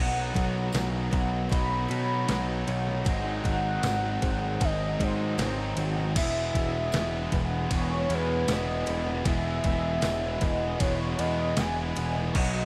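Wistful and hazy, this short shoegaze and dream pop fragment floats a velvety, detuned synth lead with chorus and tape echo over a dense bed of guitars. A thick fuzz guitar, a biting overdriven guitar trailed by reverse reverb and a tight, double-tracked distorted guitar riff in the background, while a very quiet, shimmering twelve-string acoustic guitar picks arpeggios. Up front, a growling overdriven electric bass sits beside a detuned 8-bit drum machine with a thumpy kick and a tape-warmed, small-room character, joined by a jingly, close tambourine from 0.7 s, all in light digital ambience as the chords move from B through G#7 to E at 6.2 s.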